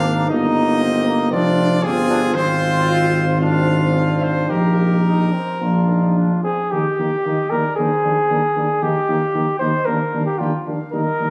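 Classical brass quintet music in Eb major, stately and triumphant, moving at a rubato 107-118 BPM in 4/4 through an 11.3-second excerpt, where a mellow, close-miked trumpet carries the melody over a punchy, up-front flugelhorn second line, a clear French horn with vibrato and a distant, roomy trombone accompanying in the background, and a prominent tuba bass with light vibrato and a smooth top, all captured on a phone in a moderately reverberant recital hall with added club reverb and compression.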